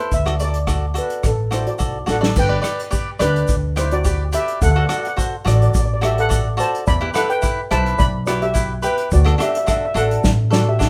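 Lightly reverberant and carefree, this festive calypso excerpt in G major at 107 BPM sets a shimmering steel pan melody, played with soft rubber sticks, over crisp picked cavaquinho, an up-front, woody and growly pizzicato upright bass, a small-room acoustic drum kit played with bundle sticks that adds fills at 2.1 and 10.2 seconds, and a grainy tube shaker in the background, all moving through D, G and Em7 chords.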